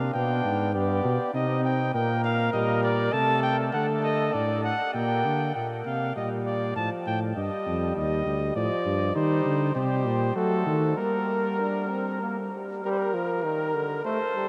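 A soft-edged cornet carries the melody up front in this joyful, elegant classical canzona for brass in triple time, joined by a gently vibrato-touched trumpet on the second line (silent from 5.5 to 9.2 s), a distant, roomy trombone accompaniment and a mellow tuba bass that stops at 12.5 s, all set in a vast, echoing space with a huge, wet reverb.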